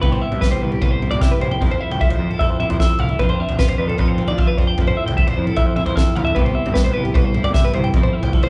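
Recorded as a band playing live in one large studio room with moderate reverb and a softened top end, this playful, intricate math rock and midwest emo excerpt at 152 BPM in F lydian pairs two bright, twangy, compressed, clean-picked twelve-string electric guitars, one up front carrying the chords and the other spinning high arpeggios, over a growling, warm, overdriven electric bass set in the background and an up-front loose indie drum kit with a punchy kick, fat snare, toms, a pumping room sound and a fill at 4.4 seconds, all cycling through Cmaj7, Fmaj7 and Dm7.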